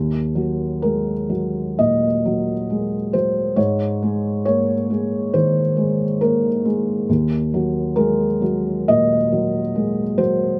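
Reflective and melancholic, this short cut from a longer neoclassical minimalist piano piece sets a lone felt-muted upright piano, soft, dark and intimate with a vintage thick-felt tone placed up front, drifting in rubato 4/4 at around 60-70 BPM in Eb dorian, tuned to A4 = 439 Hz, from Eb2 to Eb5 over Ebm, Absus4 and back to Ebm, with light reverb on an outdoor recording.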